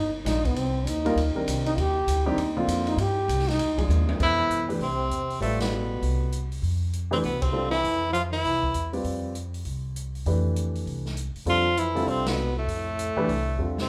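The band sounds live in one large studio room, with a moderate reverb lending depth to this searching, spiritual fragment of modal jazz played with a swung feel. A mellow, breathy trombone opens as soloist over a Cmadd9 harmony, its scooped notes and smooth top floating above a woody, dark pizzicato upright bass set up front and a warm grand piano filling in the accompaniment. A drum fill at 3.9 seconds on the open acoustic kit, with its dark cymbals and boomy kick, leads into a shift to Fmaj9 at 4.2 seconds, where a bright, present tenor saxophone enters up front to carry the melody. The trombone moves to a second line alongside the saxophone, and the two horns drop out together before returning for the closing stretch. The full band punches out a few accents along the way, and another drum fill rounds off the passage as it cuts away.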